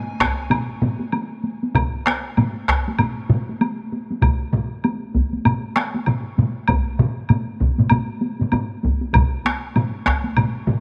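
Ceremonial and driving, this short excerpt of Japanese traditional taiko drumming moves at 97 BPM in 4/4 with a swung sixteenth-note feel, as four taiko ensemble parts struck with heavy sticks play from 0.2 seconds (two sitting up front in a live room, one close and up front, and one close and dry in the background), joined at 0.5 seconds by a close, woody woodblock, all set in light reverb and small-room ambience.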